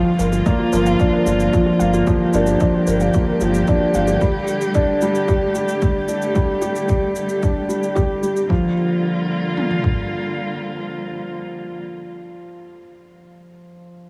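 Lightly reverberant small-room digital ambience frames this melancholic, moving piano and strings electronica excerpt, where an up-front, felt-muted upright piano with audible action noise plays a delayed riff until 14.1 s over a distant, woody string quartet holding sidechain-pumped chords, while a warbling, lo-fi pluck arpeggiates in the background and a round sub bass sits beneath until 4.2 s, as a layered shaker and a punchy deep house kit with kick and toms supply the beat.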